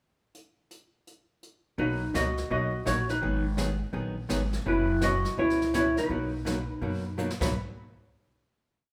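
A dark, clean lap steel played with fingerpicks and slide carries a motif-based melody, partly doubled in sixths, through this cheerful, down-home western swing piece, after a brushed jazz drum kit with snare sweeps, dark cymbals and a boomy kick opens alone with a pickup bar at 0.3 s; from 1.8 s a compressed hollow-body archtop picks a four-to-the-bar rhythm and a woody, thumpy gut-string upright bass plays a two-beat root-and-fifth line with walk-ups, all sounding like a band playing live in a large studio with moderate reverb until a drum fill at 7.2 s leads to the closing hit.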